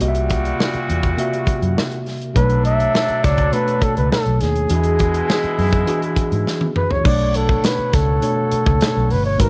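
Heard in a small room with audible lossy compression artefacts, this short excerpt of lush 1970s-style soul moves at a smooth 102 BPM in 4/4 over chords of C7#11, Bm9 and E9. A worn, slightly out-of-tune tine electric piano and tight, vintage horn stabs sit over a dark, round, tube-saturated muted bass and an up-front studio drum kit with a punchy kick and bright cymbals, which plays a fill just before 7.1 seconds. A close-miked flugelhorn carries the jazz-style melody with vibrato from 2.4 seconds, and at 7.1 seconds a lightly overdriven tonewheel organ with key click and lush chorus adds sustained chords in the background.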